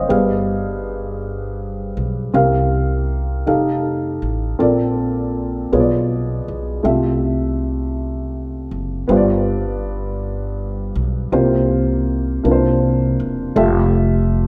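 Slow gospel in 6/8 at 53 BPM, soulful and reverent, in F major with tuning at A4 = 439 Hz. A dark, mellow upright piano with a vintage tone carries the accompaniment through rich chords such as G7b9, Bbmaj9 and Bdim7 before settling on Fmaj9 at 13.6 seconds, while a woody, thumpy pizzicato upright bass on steel strings holds the low end, both sitting up front. A moderate concert hall reverb gives this short section, cut from a longer piece, a spacious, devotional air.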